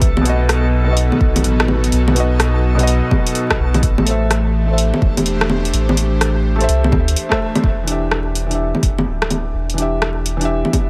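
A round, soft dub sub bass sits up front with tube saturation and sidechain pumping, anchoring this rainy, ghostly future garage excerpt in E minor at 126 BPM, with 65% swing on the 16ths. An overdriven electronic kick drum, deep and layered, pairs with an up-front deep house kit of bongos, hi-hat and rim click, both re-recorded in a small room for a gritty, close character. A felt-muted upright piano plays intimate, mellow accompaniment, its action noise audible beneath tape echo and pumping. An airy, breathy pad warbles with vintage, detuned chorus, carrying the chords B and Am, while a reversed, granular swell holds a bright A4 in the background; the pad drops out around 7.6 seconds and the texture just after, at 7.7 seconds. After a band accent at 7.3 seconds, the music shifts to an Em7 chord, with the whole mix sitting dry under a layer of vinyl crackle.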